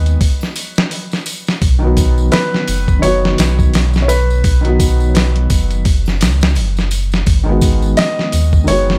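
A gritty, sampler-style soul drum kit sits up front, its thumpy kick and medium-tuned snare compressed and tape-warmed, with the groove carrying a loose 16th-note swing in this dark, hypnotic trip hop excerpt. Beneath it, a deep, round sine sub bass holds sustained notes with a fast attack and a touch of tube saturation. A felt-muted upright piano carries both the melody and the accompaniment, its soft, intimate tone marked by audible action noise, with tape echo on both parts, a boxy character on the melody, and harmonic tremolo shimmering through the lower voicings. Tambourine and triangle stay tucked in the background, lending a faint acoustic sparkle. The harmony moves from G#m7 to B and settles back on G#m7 near 7.3 seconds, all within a dry, gritty small-room sound.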